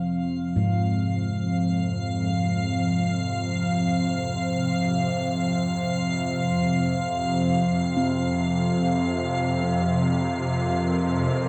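A deep, moody analog pad opens this ominous dark ambient drone, its chorused sawtooth chords sitting up front as the piece fades in, soon joined at 0.1 seconds by an icy, crystalline glass pad shimmering high above. At 0.6 seconds, gamelan-type bossed gongs add metallic, bronze arpeggios through tape echo in the background. A swarming, detuned low drone enters at 0.9 seconds and evolves with granular tension, all set in a spring-reverb space with an echo-heavy mix.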